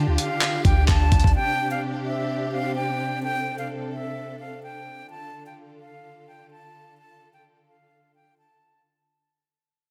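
A half-time trap groove at 128 BPM in D minor opens this brooding, menacing hip hop excerpt, with a gritty, overdriven sampler-style kit of thumpy kick, hi-hat and handclaps sitting up front beside a deep, boomy 808 bass, both stopping at 1.3 seconds. A lush, bowed symphonic string section holds sustained chords moving from Dm to Csus2 and back to Dm. A breathy, close-miked concert flute with delay carries the melody above it through to 8.8 seconds, all soaked in a dreamy plate reverb as the piece fades out.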